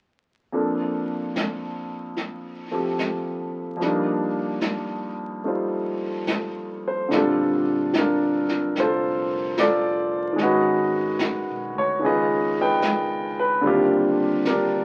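A lazily swung 4/4 pulse carries this romantic, intimate jazz ballad fragment, with a distant, roomy brush drum kit softly working the snare and hi-hat behind a clear, naturally sustaining baby grand piano that sits up front, voicing lush extended chords such as Bbmaj9 and Cm11. At 7.1 s a woody, growly pizzicato upright bass joins from the background as the harmony moves through Abm7 and Db9 toward Ebmaj9. A small, wet room reverb and the crackle of a very old 78 rpm record lend the whole a faded, nostalgic patina.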